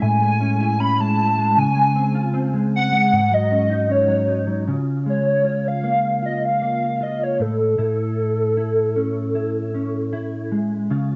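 Nostalgic and sunny, this indie pop passage at 77 BPM sets a hollow, woody clarinet-like synth lead, treated with phaser and ensemble chorus, over a clean, compressed electric guitar accompaniment shimmering with chorus and vibrato effect. Both parts sit up front through chords of Amaj7, Dbmaj7 and Ab7sus4, shifting to Db6 at 4.7 seconds before returning to Amaj7, with the lead falling away at 10.5 seconds while the guitar carries on to 11.2 seconds. A moderate spring reverb and digital ambience wrap the dark production, and the passage is cut from a longer piece.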